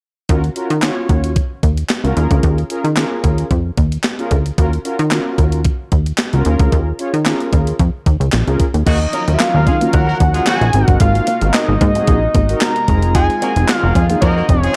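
Early-eighties boogie funk at 112 BPM in Eb dorian, this late-night, funky excerpt opens at 0.3 seconds with a plucky analog bass, punchy and up front, alongside a clean 12-bit drum machine whose thumpy kick, medium-tuned snare, handclaps, hi-hat and crash sound re-recorded in a large room. Mellow synth brass with chorus and vibrato carries the chords in a round, detuned tone, moving through Ebm9, Db69 and Bbm7. At 8.9 seconds a fat analog lead takes the melody up front, sustained with chorus, vibrato and a sub octave beneath it. With it arrive a tight horn section with a smooth top playing a second line in octave doubling, a very quiet shimmering pulse-width pad, and a twangy electric guitar riff through an envelope filter sitting in the background. The chords shift to Ebm9, Ab9 and Fm7 under a dark production bathed in digital ambience.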